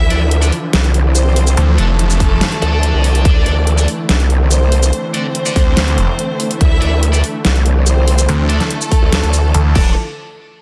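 Heavy, menacing wobble dubstep in a half-time drop, cut from a longer piece, where a growling, chorus-thickened bass and a snarling, detuned saw bass that bursts in at 1.6 s and returns at 5.6 s sit up front beneath huge, lush supersaw chords with sidechain pumping, a rich bowed chamber violin section carrying the melody through digital delay, bright double-tracked high-gain guitar stabs, an overdriven dubstep kit with a deep snare, and a punchy electronic kick arriving at 2.2 s, all packed into a dense, heavily limited, nearly dry mix.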